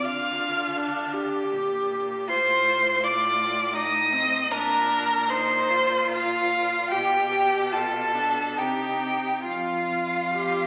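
Rubato 3/4 at 65-84 BPM carries this lyrical, slow romantic movement for string quartet in Bb major, cut from a longer piece, as an up-front first violin sings the high melody with vibrato and expressive portamento, a focused, warm second violin traces its line beneath, a smooth, even viola fills the accompaniment and a rich cello holds the bass, each bowed by a single player inside a 1.7 s scoring-stage reverb and the crackle of a very old 78 rpm record.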